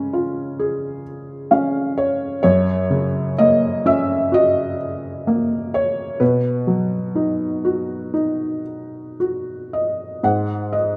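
Peaceful and warm, this short passage cut from a longer classical piece features a lyrical solo piano moving in a rubato 4/4 at around 55-66 BPM in B major. The only instrument is a felt-muted upright piano, mellow and intimate with a vintage character and short sustain, placed up front and ranging from F#2 to F#5. It plays throughout, adding a brief fill at 1.1 s. The harmony moves from C# to F# and then to B, and at 10.2 s it reaches a G#7 chord with its third omitted. A moderate recital-hall reverb surrounds the soft piano tone, giving it a gentle sense of space.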